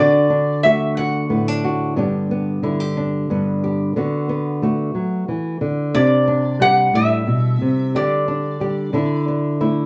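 Acoustic folk in a nostalgic, hopeful mood, moving at 60 BPM in a straight 6/8. A fingerpicked nylon-string guitar with a small, warm tone plays up front throughout, accompanying the chords D, G, D6, Csus2, Dsus4 and Dsus2. Over it, a lap resonator guitar, played with slide and fingerpicks in a mellow yet metallic, nasal voice colored by slapback echo, sings a short melody from 0.0 to 1.7 seconds and returns at 5.9 seconds. The whole fragment sits in a small room with moderate studio reverb.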